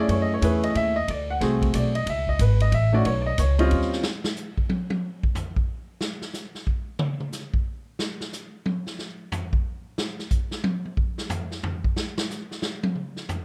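Warm and playful, this short jazz piano trio excerpt swings briskly at 182 BPM in 3/4, cut from a longer piece under a light reverb. A warm concert grand piano, smooth and vintage with deep bass, opens with a solo melody from 0.0 to 4.0 seconds, moving through F#m7, D7#11, C#5, Badd9 and D#13. Beneath it, a woody, pizzicato upright bass with steel strings sits up front in the same stretch, and both stop at 4.0 seconds. From there the swinging big-band drum kit takes a solo until 13.4 seconds, its punchy kick, medium-tuned snare, hi-hat, ride cymbal and toms sounding natural and acoustic in a big room. The drums sit up front though lower in level than the piano and bass, giving the opening chords room before the kit carries the close unaccompanied.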